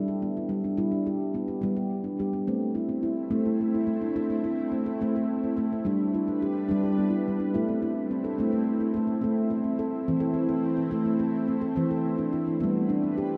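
World meditative music in a hypnotic, gentle 6/8 at 71 BPM in A minor, where a ringing nitrided-steel handpan, played up front with the fingertips, opens alone with arpeggios trailed by a diffuse ambient delay. At 3.0 seconds an ethereal pad enters beneath it with slow-attack sustained chords, its detuned sawtooth and triangle tones thickened by ensemble chorus, a noise layer and ring modulation. The harmony moves between G and A minor, and the whole piece sits in a vast, echoing cathedral reverb that lets each note hang long after it is struck.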